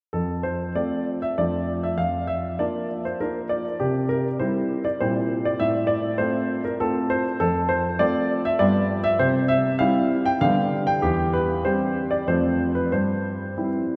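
A classical-period piano sonatina in 3/4, this short excerpt cut from a longer piece has a graceful, cheerful character, played with a gently flexible rubato. A clear concert grand piano carries the music alone from start to finish, ranging from E2 up to G5 with a deep bass and a natural, up-front tone whose notes sustain only briefly. The harmony moves through simple, elegant chords, shifting from F major into C major from 7.4 s. The piano sits in a vast, echoing cathedral space whose long, wet reverb, lasting around 4.9 seconds, trails after each phrase and softens the crisp attack into a resonant haze. The contrast between the close, articulate instrument and the enormous surrounding ambience gives the performance its distinctive sound.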